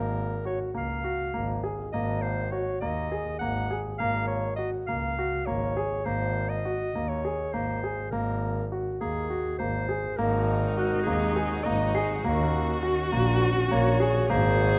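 A clear, classical-style solo clarinet carries the melody up front in this shimmering, playful contemporary chamber piece in 7/8, over polished piano arpeggios and an earthy bowed double bass, with a woody viola line entering at 10.2 seconds alongside a lush, symphonic string section in the background and a bell-like glockenspiel ringing briefly from 10.8 seconds, all set in a moderate recital hall with close, detailed sound.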